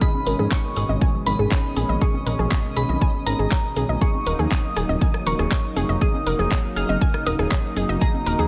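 A steady pulse at a straight feel drives this short progressive house excerpt, with a punchy, tape-tinged electronic kick sitting up front from the start and a thick, detuned sawtooth bass joining at 0.3 seconds, its filter sweeping as it pumps with sidechain compression. Around them, an electronic pop kit adds handclaps, hi-hat, rim click and shaker in a small room, while very quiet congas enter at 0.1 seconds. The mood is driving yet dreamy: a smooth, detuned analog pad holds soft-attack sustained chords with chorus and sidechain pumping, moving from G#m to D#m7 at 4.0 seconds. Above it, a crystalline wavetable pluck runs arpeggios with short decay, chorus and delay, and a filter sweep runs across the whole passage. A bright FM bell carries the melody up high, its decaying notes coloured by chorus, phaser and digital delay. Deep in the background, a twinkling granular texture with an octave-up shimmer and built-in reverb adds sparkle to the otherwise dry, close mix.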